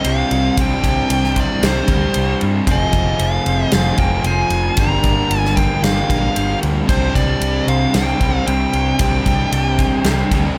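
A straight 4/4 pulse at 114 BPM from a polished, gated 80s drum kit with tight kick, medium-tuned snare and bright ride cymbal drives this brooding, dreamy rock clip in the shoegaze and dream pop vein, where a foam-muted, round, punchy fingered electric bass and a thick fuzz guitar riff with distortion and analog chorus play alongside an overdriven guitar riff bathed in reverse reverb, a twangy clean electric guitar plays arpeggios through ensemble chorus and analog delay in the background, and a dark, smooth overdriven lead guitar carries the melody with analog delay over Csus2, Fm7 and Gm7 in a small room with light reverb.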